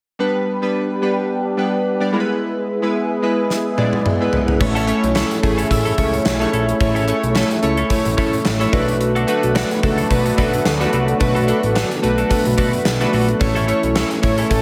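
Glossy and nostalgic, this excerpt of 1980s-style pop sits in a lush hall reverb with a touch of small-room ambience, moving at 109 BPM in A major with a light sixteenth-note swing. Up front, chorused retro synth keys carry the accompaniment with bright, detuned pulse-wave and sawtooth tones, pulse-width modulation and a filter sweep on fast-attack, decaying notes. Behind them, a sweeping resonant pad holds evolving slow-attack chords through a filter swell. A gated 80s drum kit enters with a fill at 3.5 seconds, its punchy kick, medium-tuned snare, toms, hi-hat and crash set in an airy, polished stone-room sound. At 4.6 seconds a fat, saturated analog bass with a plucky filter arrives alongside a clean, twangy twelve-string electric guitar riff that sits in the background with subtle chorus and delay. Very quiet, close and dry group handclaps join at 4.9 seconds as the harmony moves from G and E to A, Bm7 and back to A.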